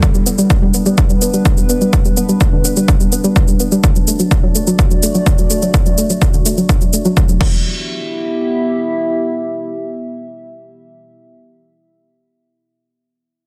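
A punchy, up-front electronic kick drives this driving, cinematic melodic techno at 126 BPM in E minor, joined by a tape-warm electronic shaker and crash cymbal, a soft, round, nasal pluck arpeggio with chorus and digital delay, and a deep, moody dark analog pad with chorus and phaser moving from G to D, with the pad, pluck and percussion all pumping against the kick under light reverb and a dense, heavily limited master, until the drums stop at 7.5 seconds and the pluck at 7.8 seconds, leaving the pad alone on E minor until 11.2 seconds.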